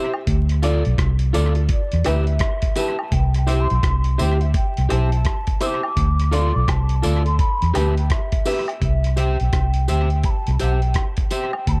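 A slightly broken-up, twangy electric guitar with tape echo and a dark, worn, boxy upright piano open this sunny roots reggae excerpt with a swung sixteenth-note lilt, quickly joined by close, dry woodblock and tambourine, a round, punchy foam-muted electric bass and a gritty, compressed sampler-style drum kit with a thumpy kick, hi-hat and rim click. At 1.7 seconds a distant, hollow wooden flute enters with a pure, vibrato-laden melody soaked in tape echo, and the piano stabs drop out at 8.7 seconds as the piece moves into a new section. The echo-heavy mix sits in light reverb with vinyl crackle, the bass and drums up front and the piano tucked in the background.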